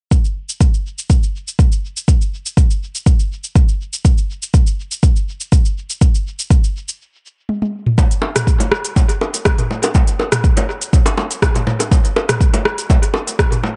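A straight 4/4 house groove at 122 BPM drives this short excerpt from a longer piece, with a driving yet spiritual mood. A deep, up-front electronic kick anchors the beat in a small room. Above it, an electronic afro-pop kit adds smooth hi-hats, rim clicks, shaker and toms, with a tape-warm tone and tape echo, sitting lower in the mix. The groove stops at 7.0 seconds, and a drum fill at 7.5 seconds leads into a second section. There, tight, high-tuned acoustic bongos enter at 8.0 seconds, with their own tape echo. The whole mix has a soft, dark top end and an echo-heavy digital ambience that gives the percussion a hazy, devotional glow.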